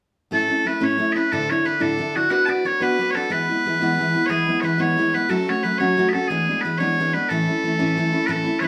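Heard from a little further back in a studio room, the recording carries a wet reverb that gives the pair a spacious, roomy glow. This is a lively, cheerful Celtic folk passage in a straight 6/8, cut from a longer piece. Loud, bright bagpipes carry the melody from 0.3 s to 8.7 s with a piercing, continuous tone that sits up front. A picked steel-string acoustic guitar accompanies them for the same span, with an auditorium-like body and an audible finger squeak. Its chords move from A through Dsus2, Bm, E, F#m and E7 before returning home to A at 7.3 s.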